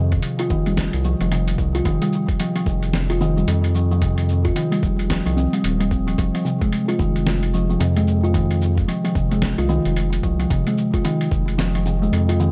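A swung 4/4 groove at 111 BPM, with 60% swing on the 16ths, carries this meditative organic downtempo excerpt in F minor. Up front, a woody, fingertip-plucked kalimba plays tape-echoed arpeggios over a round, deep analog bass with sidechain pumping. A dusty soul sampler-style kit of cabasa, hi-hat and fat snare plays alongside a thumpy electronic kick, both overdriven and gritty, and the kick drops out at 11.4 seconds. It all sits in a dry hardware sound as the chords move from Eb/F to Fm at 6.2 seconds.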